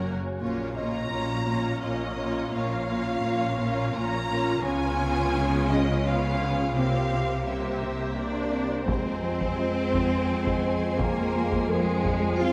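Drenched in a wet scoring-stage reverb, this eerie, ominous suspense film-score excerpt moves at 85 BPM in 3/4, with a lush violin section carrying a vibrato-rich melody over a second violin line, distant viola and cello sections, a close double bass section, an airy, breathy wind-like noise layer, a very quiet dark baby grand piano and a faint cello riff, before mellow French horns enter at 8.2 seconds and warm trombones and hard-stick taiko drums join at 8.9 seconds as the harmony settles into F minor.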